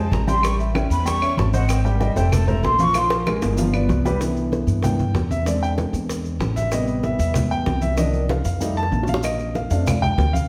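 A breathy, hollow flute solo opens this danceable, sophisticated Afro-Cuban jazz excerpt at 191 BPM, over a growly pizzicato upright bass, ringing low congas, tight high bongos, grainy maracas and woody claves, before a warm, up-front grand piano with audible action noise takes the solo at 4.2 s, settling into C major through rich chords like Cmaj9, Am9 and Bbmaj9, all set in a large studio reverb heard from further back in the room.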